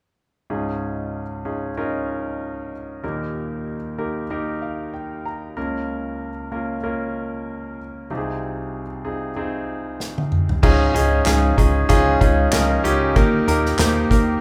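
Lightly swung sixteenths at 95 BPM in 4/4 carry this earnest, bittersweet piano-driven pop fragment, where a clear, up-front concert grand with audible action noise and deep bass plays alone from 0.5 s; an airy acoustic drum kit with bundle sticks and a punchy kick enters with a fill at 10.0 s; and at 10.6 s a glossy, nasal chorused synth bass, a very quiet twangy electric guitar riff and a barely audible mellow brass section holding sustained chords join, the whole band sitting in a moderate large-studio reverb.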